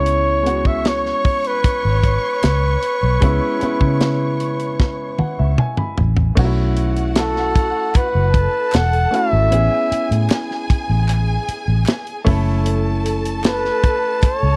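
Lush 1970s-style soul at 76 BPM, silky and smooth, in which a soft-attacked flugelhorn with light vibrato carries the melody up front over an expressive bowed string section, an intimate baby grand piano with audible action noise, a dark, round, foam-muted electric bass and a punchy, tight funk drum kit; drums and piano both fill from 4.8 to 6.4 seconds, crisp handclaps join in the background at 7.2 seconds, and the chords move from C#m7 through B7sus4 and Amaj9 to F#m7 in a dry, close studio sound.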